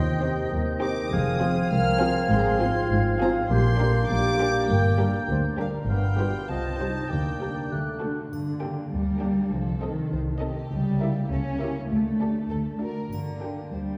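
Sneaky and mischievous, this playful, whimsical film cue tiptoes along in a straight 2/4, taken from a longer piece. Sul tasto violins carry the melody with light vibrato and a soft attack, while a second violin section with a smooth top and warm violas sit in the background. An airy, distant flute and a roomy oboe spin second lines above a close-miked, mellow bassoon and sustained French horn chords, and these winds and horns drop out at 8.0 seconds. Beneath it all, a thumb-plucked concert harp rings out arpeggios, dark, woody cellos and intimate double basses hold the bass, and a bright, dry triangle adds glints from 8.3 seconds. The ensemble is heard from further back in a wet scoring stage, and the chords slip through diminished shadings to a suspended chord before settling home.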